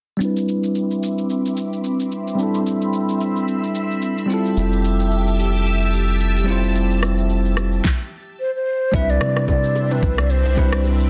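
A deep, round analog bass arrives at 4.6 seconds in this relaxed amapiano excerpt at 110 BPM in C major, lying beneath a clean, bell-like tine electric piano and a swirling vintage string machine whose chorused, phased chords pump against the beat, all moving from Cmaj9 to Fmaj9 and back. A smooth R&B kit with a knocking kick, fat tape-warm snare, rim clicks and shaker keeps a swung sixteenth-note feel as a filter sweep runs through the opening, then pauses in a brief stop. An airy, hollow concert flute with vibrato and tape echo enters at 8.4 seconds, and very quiet, saturated congas and bongos join at 8.9 seconds, all within a dense, heavily limited modern master.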